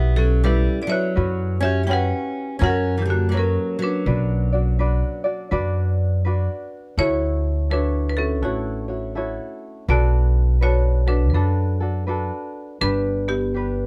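Closely miked and dry, this languid, sunny swung Hawaiian excerpt sets a percussive, boxy-sounding hard-mallet marimba melody over a light, thumb-plucked tenor ukulele and a woody, up-front pizzicato upright bass, while a fingerpicked steel-string acoustic guitar with fresh strings and audible finger squeak adds a second line until 6.2 seconds, before the music moves from B minor into D major at 7.0 seconds.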